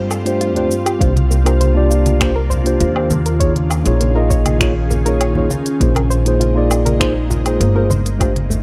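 A light reverb gives this short sunset chillout excerpt a soft, open space, setting a wistful, relaxed mood at 100 BPM in C minor. An ethereal, airy pad holds sustained chords with slow attack and long release, its detuned sawtooth tone shimmering through ensemble chorus, built-in reverb and phaser, while a soft, round pluck in the background traces arpeggios with a nasal edge, colored by chorus, cassette tape and tape echo. Up front, a woody pizzicato upright bass with steel strings anchors the low end, and a mellow, clean tine electric piano plays accompaniment with its own tape echo from 0.2 seconds. A smooth R&B drum kit brings finger snaps, smooth hats, shaker and woodblock, joined at 1.0 seconds by a soft, tape-warm electronic kick in the background and at 1.2 seconds by low-tuned, thick-skinned congas struck with hard hands. The harmony drifts through suspended ninth chords, moving from G9sus4 to C9sus4, Eb9sus4 and Bb9sus4 before returning to G9sus4.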